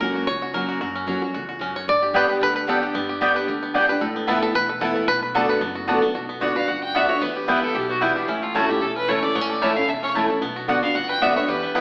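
Rustic and driving, this bluegrass excerpt in B minor races along at 225 BPM in 4/4 with a swung eighth-note feel. A twangy five-string banjo, played with fingerpicks, takes the opening solo up front, while a bright picked dreadnought guitar with fresh strings carries the accompaniment and a woody, thumpy upright bass with gut strings sits dark in the background. A mandolin with its double strings adds picked stabs from 2.1 seconds, and a clear, focused fiddle bowed with light vibrato joins the melody at 6.6 seconds as the harmony moves through Bm, Em and A. The band plays live in one room, bathed in a wet large-studio reverb, and the whole recording has the sound of an AM radio broadcast.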